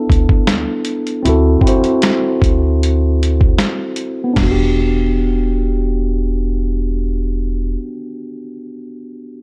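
A mellow tine electric piano, heard through its built-in speakers with a cassette-tape haze and a filter sweep over its first 4.4 seconds, moves through a rootless Cmaj13, D9 and Em9 in this reflective, nostalgic, swung lo-fi hip hop excerpt, joined by a woody, dark pizzicato upright bass and a muffled, compressed sampler-style kit of thumpy kick, snare, hi-hat, finger snaps and crash that stops at 4.6 seconds, with the bass continuing until 7.7 seconds and the piano playing alone to the close.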